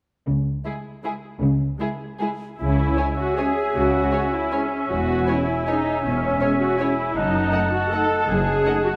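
A moderate concert-hall reverb surrounds this sweeping, bittersweet excerpt of an orchestral ballroom waltz in 3/4, played with rubato. Muted strings enter between 0.3 and 0.7 s: veiled cellos and lush double basses carry the bass, a dark violin section sings the melody over a second violin line in the background, and an up-front viola section supplies the accompaniment. At 2.6 s an airy flute, a distant, roomy oboe and a mellow clarinet add second lines, and from 3.0 s a French horn section holds smooth-topped sustained chords in the background.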